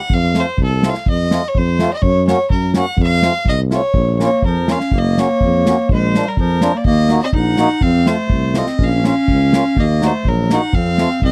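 Festive and bouncy, this alpine folk dance-band excerpt moves at 124 BPM in a straight 2/4, set in Bb harmonic minor and tuned to A4 = 436 Hz. A clear, earthy bowed fiddle with light vibrato carries the melody over a mellow, soft-attacked tuba bass placed up front, a reedy, vintage-toned accordion accompaniment and an acoustic drum kit of punchy kick and medium-tuned snare played with bundle sticks in an airy small room, while a classical-style clarinet adds a second line from 4.2 s. The dry, close recording has a 1970s studio character with little reverb.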